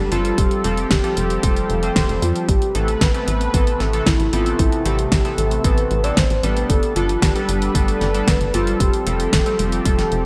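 Synthwave with a driving, nocturnal mood, this excerpt sets a soft, round octave-layered lead carrying the melody with chorus, tremolo and digital delay over a lush, detuned unison pad that pumps behind it, a tight sawtooth sequencer bass, glossy chorused polysynth stabs, a pop kit of fat snare and hi-hat, and a punchy electronic kick entering at 0.4 seconds, all washed in a hall reverb and bright 1980s-style digital production as the chords move from Fadd9 through Amadd9 and Gadd9.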